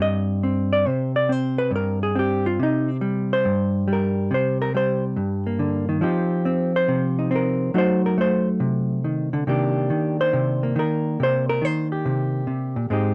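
Moody and cool, this short solo jazz passage, cut from a longer piece, swings in 4/4 with a hollow-body electric jazz guitar playing entirely alone from 0.0 to 13.1 seconds. The guitar sits up front, its clean, dark, fingered tone caught by close, detailed microphones in a dry room, ranging from G2 up to Eb5. Its harmony moves from Cm7 through Fsus2 and F#dim7 before settling on Cm9 at 9.5 seconds.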